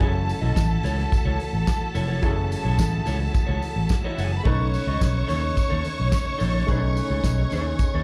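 Disco with a sultry, driving mood, this excerpt moves in a straight 4/4 over two chords, F#m7 giving way to B9 at 4.5 seconds. A damped 70s drum kit anchors the groove with a fat, dry snare, tight kick and hi-hat, while a round, dark fingered electric bass sits up front beside it. A lush studio violin section carries the second line with smooth, even vibrato, its sound close and bowed, touched by slapback echo. Clean, picked semi-hollow electric guitar and an intimate baby grand piano, whose action noise is audible, fill in the accompaniment, both also with slapback echo, as a piping tonewheel organ holds sustained chords with key click and a subtle chorus vibrato. A jingly tambourine enters at 0.3 seconds, tucked in the background. The whole mix has the feel of a live gig heard through a venue's PA, wrapped in club reverb.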